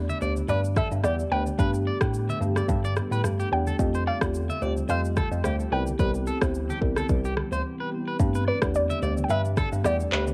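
Afrobeats at 109 BPM in G mixolydian, joyful and breezy, with a gently swung 16th feel, where a soft, round pluck carries the melody over a bell-like tine electric piano playing the bass line and a produced afro-pop kit of deep kick, handclaps, rim click and shaker, both sitting up front. Mellow marimba with soft mallets adds woody accompaniment, a twangy electric guitar at the edge of break-up plays a riff through vibrato and analog delay, very quiet congas tap underneath, and from 1.0 s a deep, moody pad holds sustained chords in the background with chorus, reverb and sidechain pumping. The harmony moves from Gadd9 through Fadd9 and Cmaj7, a brief break at 7.6 s leads into a new section at 8.2 s, and several parts carry a cassette tape tint in this home cassette recording with light reverb.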